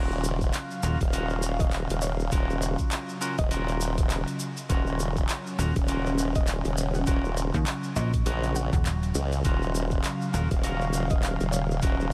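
A swung 16th-note groove in 4/4 at 101 BPM drives this funky, playful glitch hop passage in Eb minor, cut from a longer piece and opening on an Ebm9 chord. A dubstep kit of handclaps, bright hi-hats and rim clicks enters at 0.2 seconds, followed at 0.4 seconds by an overdriven electronic kick with a knocking punch, both set in a small room, while a grainy, band-limited cabasa adds vintage acoustic texture. Up front, a formant-sweep wobble bass built from sawtooth and sine tones carries tube saturation and chorus, and a snappy, metallic FM bass with a slap-like attack cuts in briefly at 0.8 seconds before returning from 5.6 to 10.5 seconds. A clean, scooped semi-hollow guitar plays fingered stabs through a diffuse ambient delay, and a mellow, detuned sawtooth pad holds sustained chords in the background with chorus, sampler grit and sidechain pumping, the pumping shared with the guitar. 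From 1.6 seconds a very quiet, woody and nasal wave-folded pluck adds a dark, short-decaying melody up high, all under a light reverb.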